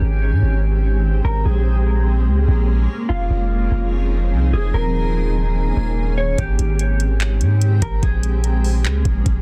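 A dense, heavily limited modern master with a dry room sound frames this short, floating piece of atmospheric cloud-rap, cut from a longer track and set in a half-time feel. A deep, sine-toned 808-style bass sits up front and loudest, its long notes hitting with a fast attack and then decaying. Around it, a granular cloud pad holds sustained chords through its own built-in reverb, sounding blurred and detuned as it slowly evolves and pumps against a sidechain. A dark, clean electric guitar carries the fingered melody, compressed and softened by lush chorus, a low-pass filter and digital delay, drifting through a dreamy progression that moves from Abmaj7 through Bbm7, Fm7 and Eb7sus4. At 6.4 s a smooth, electronic R&B drum kit arrives with a knocking kick, metallic hi-hats and handclaps, all roughened by vintage 12-bit sampler grit.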